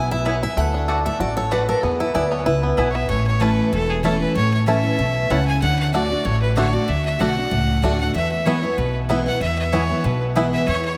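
This lively, rustic, swung bluegrass cut in E mixolydian at 190 BPM opens with a bright, full-bodied dreadnought guitar solo up front over twangy fingerpicked banjo arpeggios and thumpy gut-string upright bass, a mellow mandolin adds background stabs with delay from 0.3 seconds, and a clear, intense fiddle with light vibrato and delay takes the melody at 2.9 seconds, the mix soaked in a huge, dreamy reverb.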